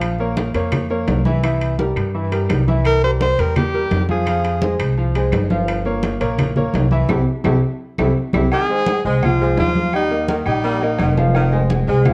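Through the warble and pitch drift of worn old cassette tape with light reverb, this driving, fiery salsa excerpt at 170 BPM puts a brilliant concert grand piano and a growly, thumpy upright bass up front over saturated, hard-handed congas, ringing timbales and agogo bells, and woody claves in the background, with a breathy tenor saxophone soloing with vibrato from 2.9 s before a band accent and drum fill lead at 8.5 s into F minor, where a punchy, smooth-topped saxophone section adds a second line beneath it.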